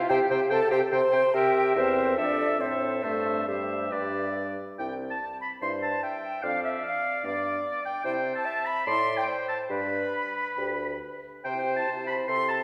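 In a quick 4/4 pulse of 135 to 150 BPM, played with rubato, this spirited, lively classical-period wind quintet movement in C major is cut from a longer piece and heard in a church or concert hall with a wet reverb. The airy silver flute carries the melody with soft-attacked vibrato, and a clear oboe with light vibrato sings a second line, while a bright, present clarinet and a vintage-toned French horn fill the accompaniment. A mellow, roomy bassoon anchors the bass, and at 4.8 s the music moves into a new section that closes on C at 11.4 s.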